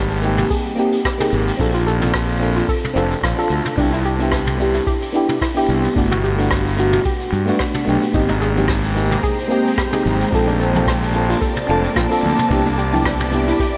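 A blissful, warm sunset chillout excerpt at 110 BPM in 4/4 with a light 16th-note swing, drifting through lush major-ninth chords from Abmaj9 to Bbmaj9, Cmaj9 and Gmaj9 inside a huge, dreamy reverb. A mellow, dark FM electric piano with chorus, phaser and diffuse delay carries the harmony over a fuzzy, overdriven fingered bass set up front, while a soft round pluck arpeggiates quietly in the background and a deep, overdriven electronic kick sits under a brushed jazz kit of hi-hat, rim click, shaker and toms. Very quiet, ringing congas join at 8.3 seconds, and an ethereal, airy pad with ensemble chorus and phaser enters behind everything from 8.9 seconds.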